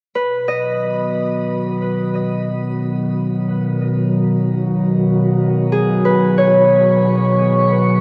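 Spacious and reflective, this ambient passage drifts in free time and is cut from a longer piece. A warbling, tape-like pad holds sustained chords from 0.2 to 8.0 seconds, its square-and-triangle tone slow to bloom, dark and nostalgic, with chorus and its own reverb lending a lo-fi haze. Above it, a Celtic harp plays fingerpicked arpeggios across the same span, its acoustic strings ringing and up front, trailed by a diffuse ambient delay. The harmony rests on a G#m7 chord throughout. A wet shimmer reverb with a long tail and the grain of cassette tape give the whole recording a faded, memory-like sheen.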